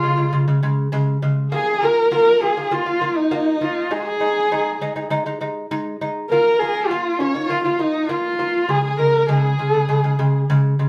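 Solemn and windswept, this short passage from a longer piece is Mongolian traditional folk music in a straight, steady 4/4. A dark, husky horsehead fiddle carries the melody up front, bowed by a single player with expressive vibrato and portamento and a smooth top end on its horsehair strings. Behind it, a distant erhu traces a second line with a soft attack, its bowed tone gently sliding and trembling with vibrato. A delicate, fingerpicked acoustic lute sits close to the listener, spinning arpeggios on double gut strings, some of them octave-doubled, and it rings on briefly after the two bowed parts stop at 10.5 seconds. The ensemble plays live together in one room, bathed in a wet studio reverb that adds a sense of open space around the strings.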